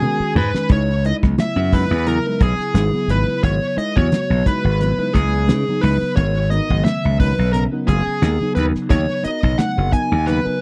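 A drum fill on a damped 70s kit with a fat snare and tight kick opens this intense, slick piece of electric jazz fusion, cut from a longer work, as an up-front, smooth overdriven lead guitar carries the melody over a mellow tine electric piano with analog chorus and dark, compressed electric guitar stabs touched with subtle chorus, while a punchy, bright slap bass enters at 0.2 s and very quiet, thin-skinned congas join at 0.4 s, the whole captured in a dry, close 1970s-style studio sound that moves from G#m11 through C#m9 to G#m9 at 6.2 s.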